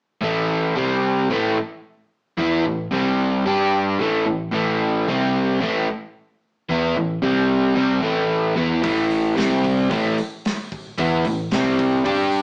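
This raw, swaggering garage rock fragment sounds like a band playing live in one room, heard through a small speaker with a moderate studio reverb. A crunchy, overdriven electric guitar sits up front, double-tracked and picked, driving a riff built on A5 and C5 power chords with a brief turn to G5. Beneath it, a dark, round hollow-body short-scale bass plays in the background, its amped tone colored by tube saturation. At 8.8 seconds a gritty, small-room breakbeat kit enters with hi-hat, a punchy kick and a medium-tuned snare, its sound dark, smooth and saturated with a rolled-off top. The straight feel in 4/4 carries the whole piece until it cuts off at 12.4 seconds.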